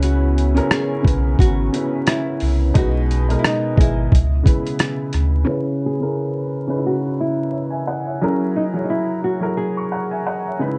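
A melancholic, nostalgic lo-fi hip hop excerpt opens with gritty, pitched-down boom bap drums, a round sine sub bass, a worn, slightly detuned upright piano, a fingerpicked nylon-string guitar melody with finger squeak, and a warbling tape-like pad in the background, all set in a dark production with vinyl crackle, until the drums, bass and pad fall away by 5.5 seconds and a filter sweep carries the piano and guitar on to about 10.8 seconds.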